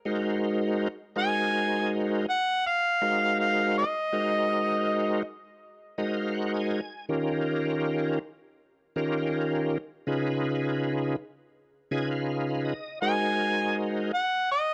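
A straight 4/4 blues pulse at 81 BPM in Ab mixolydian sets a swaggering, soulful mood in this short excerpt from a longer piece, where a gritty, overdriven tonewheel organ with chorus vibrato and a slow rotary speaker lays down thick Ab9, Eb9 and Db9 chords and adds fills at 5.6 and 11.5 seconds, while a mellow, overdriven harmonica sits up front with scooped, punchy notes and light vibrato from 1.2 seconds, returning at 13.0 seconds, all captured in a dry, close 1970s-style studio sound.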